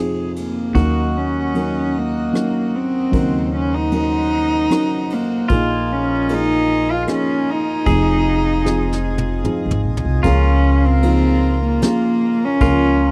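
In a slow, straight 3/4 at 76 BPM, a soft brush drum kit with a punchy kick, medium-tuned snare, rim clicks, ride cymbal and toms sets a gentle pulse, playing a fill from 8.7 to 10.2 seconds before the harmony moves to Db6. This acoustic folk-pop ballad in Eb dorian feels heartbroken and reflective, a short passage cut from a longer piece. A bowed cello carries the melody up front, intimate and smooth with light vibrato, a soft attack and a sul tasto tone. Beneath it, a pizzicato upright bass on gut strings sounds woody, dark and thumpy, while a felt-muted upright piano adds mellow, hushed accompaniment. A bright, twangy pedal steel guitar played with fingerpicks and slide traces a quiet second line with volume swells, and a hand-pumped harmonium breathes reedy, nasal sustained chords. The sound is dry and close, like a 1970s studio recording with little reverb.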